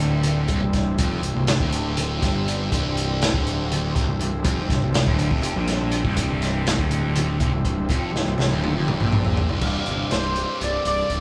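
Hypnotic and hazy, this psychedelic rock excerpt runs at 243 BPM counted in eighths, in a lopsided 7/8 with a straight feel, centred on C mixolydian and drifting from a C chord to Cadd9 at 9.6 seconds. A thick, double-tracked fuzz guitar drives the riff up front, its bright, distorted tone coloured by phaser, while a round, punchy fuzz bass with overdrive digs into the low end beneath it. The crunchy breakbeat kit enters at 0.2 seconds with a tight kick, medium-tuned snare and dark cymbals, sounding saturated and gritty with a rolled-off top, and a drum fill spans 8.1 to 9.6 seconds. Very quiet, close and dry congas ring in the background, and a vintage, buzzy combo organ holds overdriven chords with light vibrato low in the mix. At 10.1 seconds a bold, retro octave-doubled lead arrives, its sawtooth and triangle tone shaped by a filter sweep, chorus, phaser and vibrato. The band plays together in one room with moderate studio reverb.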